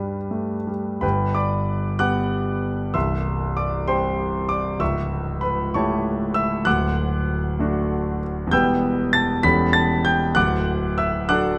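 A solo concert grand piano opens at once, its tone clear and intimate, with the mechanical noise of the action audible beneath the notes. This is a romantic character piece in 6/8, played with a flexible, rubato feel that gives the music a hopeful, lyrical mood. The harmony moves from G to C, then through A7/C# to D, before passing through Em and A7/E to settle on D near the close. The instrument spans from deep bass to high upper notes, and its long sustain lets each chord bloom and linger. Close, detailed microphones keep the piano polished and up front, while a moderate recital hall reverb of 1.8 seconds adds a gentle sense of space around this short fragment of a longer work, which ends at 11.6 seconds.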